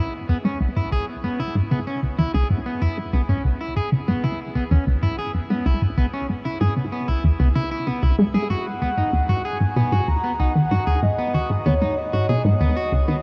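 Cosmic, expansive sequencer-driven space music in which a juicy, squelchy resonant blip pluck sits up front with a detuned, sub-octave riff through chorus and tape echo, a bright, clean picked electric guitar weaves arpeggios in shimmer reverb and tape echo, a filter sweep runs over the synth arpeggio sound, and a breathy, flute-like synth lead with vibrato enters at 8.5 seconds as the harmony moves from C#m7 to G#m7, all bathed in a huge ambient reverb and a dark production.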